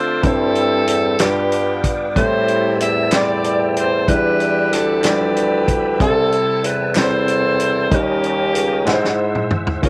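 Heard in a small room, this slow, soulful and uplifting gospel excerpt in 6/8 sets a clear, tight saxophone section on the melody over an intimate grand piano with audible action noise and long sustain, a clean tonewheel organ with key click, chorus vibrato and slow rotary speaker sitting in the background, a mellow bassoon with light vibrato carrying the bass, a dry, mid-forward soul drum kit with a tight kick that plays a fill at 8.9 seconds, and crisp, very quiet handclaps joining at 1.2 seconds.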